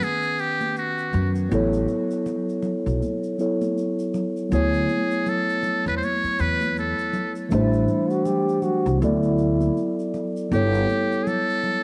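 A buzzy, thin muted trumpet carries the melody with light vibrato and scooped notes across this relaxed jazz-hop excerpt at 80 BPM, its 16ths swung over a mellow, clean tine electric piano that moves through Emaj9, A69, Dmaj9, Am7, D69 and G6. A woody pizzicato upright bass enters at 1.1 s, soft-handed congas and a tube shaker add a vintage, band-limited pulse, and a breathy trombone joins with its own vibrato-tinged second line at 7.5 s. Light reverb and studio ambience surround the cassette home recording, giving it a warm glow.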